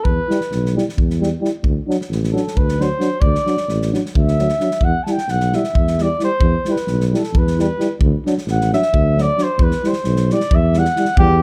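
Bittersweet and virtuosic, this short Balkan brass band excerpt in E minor moves in a brisk 7/8 at 264 BPM in eighths, with a mellow, punchy flugelhorn carrying the solo melody up front over a soft-attack tuba bass and an acoustic drum kit of kick and medium-tuned snare. Two euphoniums, one dark with a smooth top and one mellow, both with light vibrato, sit in the background as accompaniment from 0.3 seconds, while the harmony turns between Em and D. The sound is close and detailed with little reverb.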